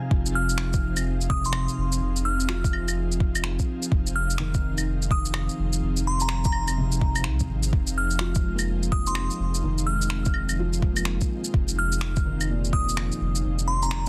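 Future garage in F minor at 126 BPM with a swung 16th feel, this rainy, melancholic excerpt sits on a single Fm7 chord: a felt-muted upright piano with audible action noise pumps under sidechain and digital delay, an ethereal, warbling pad with ensemble chorus, reverb and vintage 12-bit grit breathes around it, a round sine sub bass and an overdriven soft kick sit up front, an overdriven electronic shaker, finger snaps and claves (the snare soft-clipped) fill out the groove, and a crystalline FM synth bell carries the melody high above through chorus and delay, all in a dry, dense, heavily limited master dusted with vinyl crackle.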